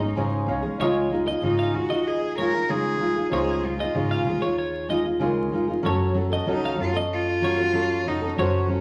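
A warm, intimate cello carries the melody up front in this short pop excerpt, bowed sul tasto by a single player with an airy bow, a soft attack and light vibrato. The mood is heartfelt and carefree, moving at 95 BPM in a straight 4/4 in Db major. A full-bodied fingerpicked steel-string acoustic guitar sits up front beside it, while a clear, open upright piano stays in the background after opening with a short fill that ends at 0.8 seconds. At that point a bright, clean twelve-string electric guitar enters with compressed, picked arpeggios, and a woody pizzicato upright bass anchors the low end. The harmony moves from Absus4 to Dbadd9 and then turns to Gbm at 5.9 seconds. A wet large-studio reverb surrounds the mix, along with a layer of vinyl crackle.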